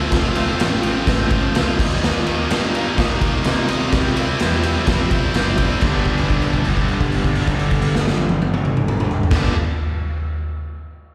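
A straight 4/4 beat drives this rowdy, raw garage rock excerpt at 126 BPM in G mixolydian, cut from a longer piece. The raw garage drum kit sits up front with a punchy kick, a medium-tuned snare, crash and ride cymbals and toms, all saturated and gritty in a bright stone room that pumps. A cranked stack guitar, overdriven and double-tracked, plays the riff over chords moving from F to Eb to C. The fuzz-picked electric bass growls underneath, amped and overdriven. At 5.8 seconds the music lands on G for a new section, where a held note rings until 9.3 seconds. It sounds like a live gig heard through the venue's PA, carrying a recital-hall reverb.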